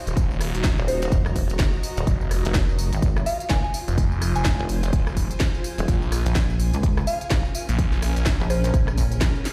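Bass house with an aggressive, gritty mood and a swung groove, cut from a longer piece: a punchy electronic kick and a house kit of cracking snare, crisp hi-hats, rim click and tambourine drive two up-front basses, a swirling, saturated phased saw bass and a heavy, pulsing pluck wobble bass with chorus, both pumping under sidechain, while a cloudy, evolving granular pad drifts behind and a pure FM synth bell with chorus and digital delay enters at 0.9 seconds, all heard through a big sound system in a bare stone room.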